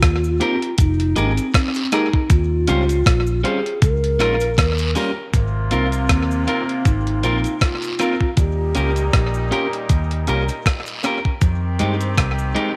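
Sweet and smooth, this lovers rock reggae excerpt sways at 79 BPM in Ab major with a lightly swung feel, built on a thumpy, overdriven 12-bit drum machine of kick, hi-hat and rim click with slapback echo, and a dark, round, foam-muted electric bass sitting up front. A breathy, hollow bass ocarina carries the melody through tape echo until 9.9 seconds, over a worn, slightly out-of-tune tine electric piano in the background, picked guitar stabs just at the edge of break-up with slapback echo, and a faint cabasa and guiro. At 5.3 seconds a pop-style horn section with light vibrato and a smooth top enters as a second line, all of it sitting in light reverb.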